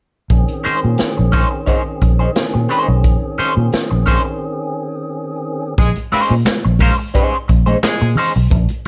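Hypnotic and sly, this funk excerpt opens on a Bbm11 chord with a round, foam-muted bass and a boomy, roomy drum kit with handclaps up front, a twangy guitar on the edge of break-up pushed through wah, and fat tonewheel organ chords turning on a slow rotary speaker, before a break at 4.4 seconds gives way to a tight, octave-doubled horn section and thin-skinned congas at 5.8 seconds, joined by a barely audible group handclap at 6.5 seconds, all under light reverb.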